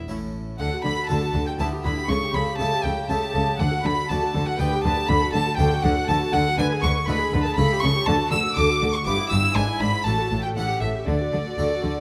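A close, detailed recording set in a moderate scoring-stage reverb features a rich, reedy solo violin up front, carrying the melody of this festive, lively baroque-style concerto movement in D major at 120 BPM in 3/4, taken from a longer piece. Behind it, a warm chamber violin section also carries the melody in the background while a dark, distant studio violin section adds a very quiet second line, both sections on gut strings with light vibrato in period style. A dry, full, close-miked harpsichord and a smooth-topped viola section fill in the accompaniment over a dark cello section and a nasal double bass section, which hold the bass until 11.9 s as the harmony moves through D, A7 and E7 chords to a D close.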